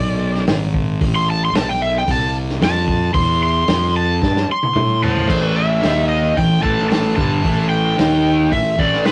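Heavy and smoky, this short blues rock power trio and southern rock cut at 112 BPM in A minor opens with a bright, overdriven slide guitar soloing over a growly fuzz bass, a muffled vintage drum kit entering at 0.3 seconds with a fill at 4.2 seconds, before a double-tracked overdriven electric guitar riff joins at 5.3 seconds, all captured in a rough rehearsal-room recording with tube saturation and light reverb.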